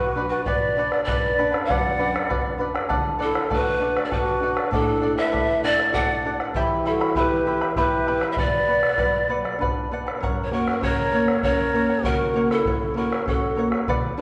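A straight 3/4 lilt at 98 BPM carries this festive yet melancholic Andean folk ensemble piece, cut from a longer work, moving through Bm, D and Em before landing on F# at 10.2 s. Up front, a mellow bamboo pan flute sings the melody with soft, chiffy attacks and an unsteady vibrato, while a bright, tongued large quena traces a woody second line beneath it. Fingerpicked charango shimmers on its doubled strings over a dark, small-sounding nylon-string guitar, and a deep, distant bombo joins at 0.5 s, the whole group ringing in a reverberant recital hall.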